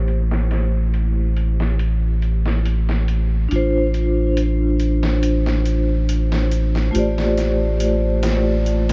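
A hazy layer of vinyl crackle and a low-pass filter, set in light reverb and digital ambience with a filter sweep running through its 8.9 seconds, frames this hypnotic, melancholic trip hop fragment cut from a longer piece. At 70 BPM in 4/4 with a gentle swing on the sixteenths, it sits in A minor and moves through Am7, Dm7/A and F69/A. A vibraphone played with soft mallets carries the accompaniment between A3 and D5, its metallic, ringing tone mellow and mid-forward, colored by tremolo, tape echo and a slow motor vibrato. Underneath, a round analog bass holds a deep A1, dark and nasal, with a fast-attack filter pluck that sustains up front in the mix. A sampler-style drum kit enters at 0.1 seconds with hi-hat and a medium-tuned snare, sounding compressed, pitched down, muffled and overdriven, with high-pass filtering on both snare and hats, and it sits low in the balance.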